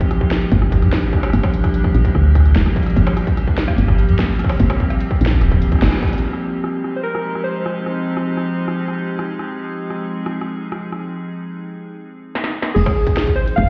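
A woody, round FM bass sits up front with tube saturation, playing from 0.5 s and dropping out near 5.9 s before returning at the close, its dark, decaying tone anchoring this glitchy, melancholic IDM excerpt at 147 BPM in straight 4/4, in F dorian. An icy, crystalline glass pad sustains chords throughout, moving from Gm7 to Fm9 at 6.2 s, its airy, ring-modulated shimmer carried by chorus and built-in reverb. A distorted electronic kick drives the opening and reappears in the final moments, while a quieter industrial kit of clanging snare, smooth hi-hats, rim click, crash and struck metal runs the whole way under low-pass filtering and delay. In the second section, warbly lo-fi synth keys enter at 7.0 s with a nostalgic, detuned, mellow line colored by chorus and tape echo, returning briefly at the end. A band accent lands at 5.8 s and drum fills mark the section changes, and the whole mix is heard muffled as though through a wall, set in a stone room reverb with light digital ambience.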